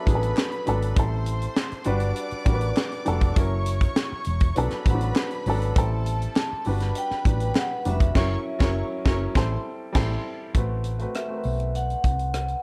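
A ringing, metallic vibraphone with medium hard mallets and a slow motor vibrato sounds a note at the start, then carries the melody from 6.4 seconds, over a smooth, bowed violin section that plays a second line until 10.2 seconds and a natural-sounding baby grand piano providing accompaniment. This is a bittersweet, cinematic, lush 1970s-style soul passage at 100 BPM in A dorian, with a round, dark, amped hollow-body electric bass and a tight funk drum kit with a high-tuned snare, both up front, plus crisp, distant group handclaps kept very quiet. The band hits accents from 8.2 seconds as the chords move through Bm7, Am7, Gmaj7 and F#7, settling on Am69 in a short closing section, all in a dark production with light studio reverb.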